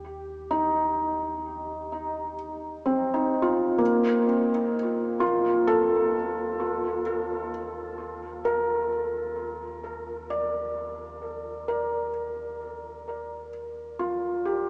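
A felt-muted upright piano, soft and intimate with audible action noise, sits up front playing tape-echoed arpeggios over a single Ebmaj7 chord while a deep, round sine sub bass holds in the background, both fading out across this weightless, peaceful ambient fragment, which is bathed in a vast cathedral reverb and carries the character of cassette tape heard through a small speaker.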